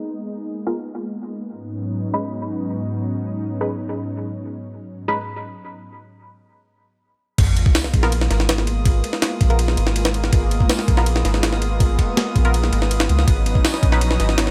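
A gritty, pitched-up jungle sampler-style drum kit with a thumpy kick, high-tuned snare, crash, ride and hi-hat drops in at 7.4 seconds alongside a round, deep dub sub bass and a very quiet sub drop, landing under a lush, warbling detuned unison pad and muted sawtooth dub chord stabs with chorus and dub echo that filter-sweep through the opening in G# dorian, while a glassy, drifting harmonics texture hovers in the background of this atmospheric, raw drum and bass excerpt at 163 BPM.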